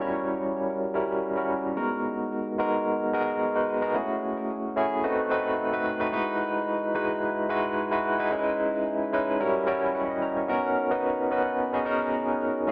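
This is a breezy, glossy pop piece at 110 BPM in 4/4, with a light swing on the sixteenths and a home key of B major. A single tine electric piano carries it alone from 0.0 to 12.7 seconds, ranging from G3 up to A#5. Its tone is barky and clean, pushed through a combo amp with a fast tremolo, subtle chorus and delay, and it sits up front in a lush hall reverb. The harmony moves through rich extended chords: it opens on F#7b9, then moves through G#m9, F#m9, B7b9, Emaj9 and C#m9. At 9.4 seconds the piano plays a short fill over a return to F#7b9, which leads into a closing Bmaj9 at 10.5 seconds before the passage cuts off as part of a longer piece.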